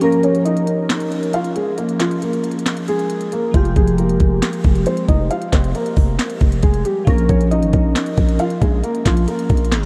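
A dreamy mix soaked in a huge ambient reverb carries the hazy grit of cassette tape and a tape-stop effect, setting a melancholic, eerie tone for this half-time trap and hip hop passage cut from a longer piece. Up front, a felt-muted upright piano sings the melody in a soft, mellow, intimate voice with thick felt, touched by subtle chorus and delay. Beneath it, glassy digital keys with a sine-like tone, a filter sweep and chorus supply fast-attack, decaying accompaniment. An electronic trap kit sits forward with a knocking kick, sharp snare, crisp hi-hats and handclaps. For the opening break, the drums, piano and keys play with the bass held back. At 3.5 s a growling, buzzy 808-style bass arrives as the harmony moves from Bbm to Fmadd9, before returning to Bbm at 7.1 s.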